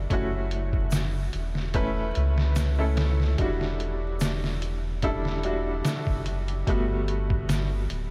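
A deep, round analog bass with a filter sweep sits up front in this hypnotic, dark trip hop fragment at 73 BPM, its sustained sine-like tone anchoring swung 16ths in E dorian, tuned to A4 = 438 Hz, as the chords move from F#m7 to Em9 at 3.4 seconds and Gmaj9 at 6.7 seconds. Alongside it, a bright, woody upright piano with short sustain plays accompaniment through tremolo and tape echo, while a pitched-down, muffled sampler-style drum kit with vintage 12-bit grit delivers a thumpy kick, medium-tuned snare and hi-hat. A tube shaker with group handclap enters at 0.9 seconds in the background, all within a dreamy mix soaked in huge ambient reverb and vinyl crackle.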